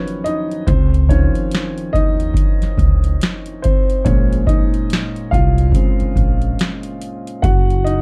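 An intimate, woody upright piano with audible action noise and long sustain, softened by a low-pass filter, leads this mellow, dreamy lo-fi hip hop excerpt at 71 BPM with a swung 16th feel. A booming analog drum machine joins at 0.1 seconds with a deep kick, crisp snare and metallic hats, and a thumpy pizzicato upright bass enters at 0.7 seconds as the harmony moves through Cbmaj9#11, Dbmaj9 and Bbm9, all set in a dark production with light reverb.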